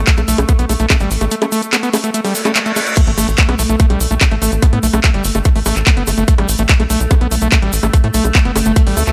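Set in a digital ambience, this driving, hypnotic psychedelic trance excerpt pairs an up-front electronic kick drum and a layered drum and bass kit of bongos, crash cymbal, handclaps and metallic hi-hats with a punchy, sawtooth-plucked tight sequencer bass and a squelchy, gritty overdriven acid bass riff carrying distortion, delay and sidechain pumping, while a grainy tube shaker, an evolving, detuned wavetable pad washed in chorus, reverb and pumping, and a reverse cymbal from 2.3 seconds leading into an impact at the 3.0-second drop sit in the background.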